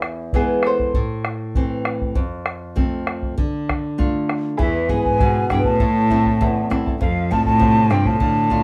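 A straight 2/4 pulse at 99 BPM, set by a deep, dark, dry bombo and a bright, up-front classical nylon-string guitar fingerpicked on fresh strings with audible finger squeak, drives this earthy, melancholic Andean folk excerpt, where a shimmering, fingerpicked double-strung charango sits in the background, featured from 0.0 s and returning at 4.6 s, when a rich, smooth bowed cello takes the low melody up front with vibrato and a breathy wooden quena adds a crisp, chiffy second line above, the whole set in a wet studio ambience.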